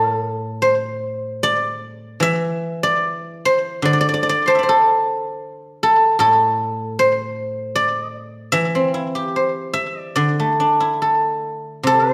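Pastoral and elegant, this short excerpt of Chinese traditional solo plucked-string music moves at about 75 BPM in 4/4 with uneven, rubato beats in the D shang mode, tuned to A4 = 444 Hz. A lone guzheng, played with fingerpicks and sitting up front, spans A2 to C6 across its 12.1 seconds, its silvery, ringing acoustic tone carrying slapback echo. A moderate recital hall reverb surrounds the instrument.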